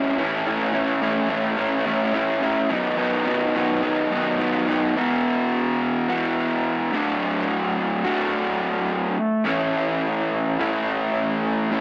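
A raw, overdriven electric garage guitar plays alone, dark, lo-fi and double-tracked up front in a moderate echo-chamber reverb, driving a confident straight rock feel through A, B, Esus2, D/F# and back to A in this roughly 12-second cut from a longer piece.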